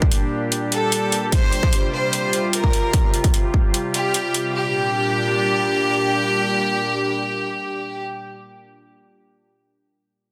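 A half-time 4/4 pulse at 149 BPM drives this heavy wobble dubstep fragment in G minor, its punchy, layered electronic kick and metallic hi-hat sitting up front with a tape-warmed edge until the kick drops away at 3.6 seconds and the hats at 4.4 seconds. Alongside them, an evolving wavetable pad holds sustained chords, morphing and warbling with a detuned, vintage, full-bodied character, slow attack and long release, thickened by chorus and its own reverb and pumping against the sidechain. A bright chamber violin section enters at 0.7 seconds to carry the melody between G4 and C5, bowed as an ensemble with light vibrato and an earthy grain, trailed by tape echo. The harmony moves from G minor to Fsus2 and back to G minor as the passage shifts into its second section, and the mood stays chaotic and menacing throughout. A lush hall reverb of 1.7 seconds and a small room ambience surround the parts, all pressed into a dense, heavily limited modern master.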